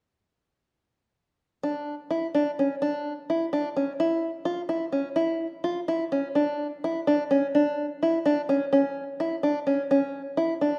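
An open-back banjo enters at 1.6 s, fingerpicking arpeggios in a plunky, twangy voice that sits up front in the sound. This short contemporary instrumental fragment, cut from a longer piece, moves in an odd 5/8 metre with a straight feel, giving it a pensive yet urgent mood. The banjo's lines stay within a compact span between C#4 and F4, and its percussive attack keeps the arpeggios crisp and insistent. A moderate concert hall reverb surrounds the instrument, adding a sense of space around each note. A new section begins at 6.4 s, and the banjo carries on alone until the fragment ends at 10.8 s.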